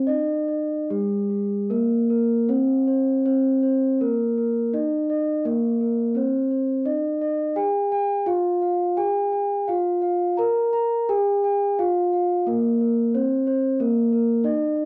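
A bronze gamelan metallophone carries the melody up front, its airy, ringing tone struck with padded disc mallets, while a second, quieter bronze metallophone plays mellow arpeggios an octave higher; both run the full 14.9 seconds with a cassette-tape color. This ceremonial, shimmering gamelan fragment, cut from a longer piece, moves in a straight 4/4 at 71-96 BPM in Bb slendro, shifting into a new section at 5.5 seconds. A home cassette recording places the pair in a small, reverberant room.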